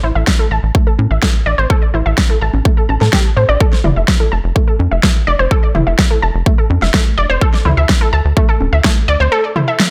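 A lush, detuned unison pluck leads this expansive, bittersweet progressive house excerpt at 126 BPM in A minor, its bright arpeggios pumping against the sidechain, trailed by digital delay and shaped by a filter sweep across the whole 9.9 seconds. A tight, driving sawtooth sequencer bass with a moving notch sits up front from the start, joined by a punchy overdriven kick and a huge overdriven snare from 0.3 seconds. Tape-warm electronic congas and toms, recorded in a small room, join at 1.0 seconds as the harmony moves from A5 through Fmaj7 to D5 under light reverb.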